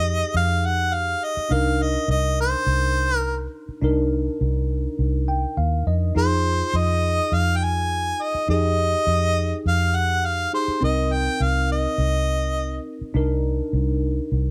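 This straight-eighth soul blues in C minor moves at 103 BPM in 4/4 with a smoky, mournful mood, and it is cut from a longer piece. A warm harmonica carries the melody up front in a jazz-styled solo, its vibrato and scooped notes sitting over a smooth top and bathed in plate reverb until it stops at 12.8 seconds. Beneath it, a bell-like tine electric piano plays clean, direct accompaniment through analog chorus, adding a fill between 5.0 and 6.2 seconds and another at 14.3 seconds. A vintage muted fingered electric bass holds the low end with a round, punchy, foam-muted tone that sits prominently in the mix. The harmony moves between Fm7 and Cm7, and the whole piece has a light reverb.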